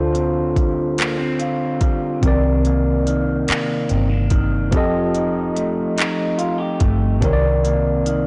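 Sultry and yearning, this short excerpt of slow six-eight R&B in C dorian at 48 BPM sets a worn, slightly out-of-tune tine electric piano up front over a dark, foam-muted fingered bass and a soft, electronic drum kit of kick, smooth hi-hat and handclaps entering at 0.1 seconds, while a twangy, slightly broken-up guitar through a small old amp carries a second line, all bathed in light reverb on a blown-out, overdriven recording that moves from G7sus4/D through Cm9 and F9 back to Cm9.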